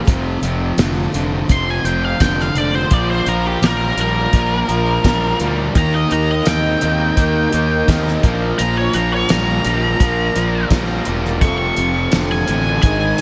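An octave-fuzz lead guitar, distorted and up front with wah and slapback echo, solos from 1.5 s over a driving, confident classic rock groove at 85 BPM in Bb major, moving through F, Bb and Eb before settling back on F. Beneath it, a damped 70s drum kit with a fat snare, tight kick, hi-hat and tambourine pushes alongside a round, fuzzy fingered bass, while an overdriven semi-hollow guitar and a sludgy dark distorted guitar sit in the background and a very quiet, boxy, shimmering twelve-string acoustic adds accompaniment. At 2.9 s a bright, double-tracked cranked stack guitar and a faint, shouting tonewheel organ on slow rotary speaker join in, and a lush hall reverb gives the excerpt a big arena sound.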